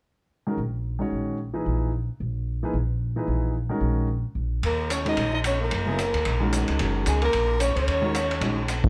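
A briskly swung 4/4 at 222 BPM drives this intense, cool modal jazz excerpt in Eb phrygian. It opens on an Ebm7 with a warm concert grand piano and a woody, thumpy pizzicato upright bass up front. At 4.6 seconds a vintage drum kit joins with dark cymbals and a punchy kick, and at 4.7 seconds a bright, breathy soprano saxophone takes the melody with light vibrato and plate reverb, while a smooth-topped tenor saxophone with scooped notes traces a second line in the background, all within a dark, warm production touched by light reverb.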